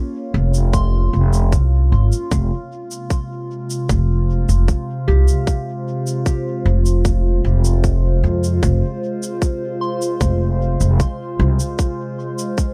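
A woody, growly pizzicato upright bass sits up front from 0.3 to 11.6 s in this meditative, hazy ambient dub excerpt at 76 BPM in F minor, joined by a tight, overdriven electronic kick and an overdriven cabasa, while a warbling, detuned, lo-fi tape-like pad with chorus, phaser and built-in reverb holds sustained Bbm/F and Fm chords and a soft, pure FM synth bell plays arpeggios through chorus and analog delay in the background of a dry but echo-heavy mix.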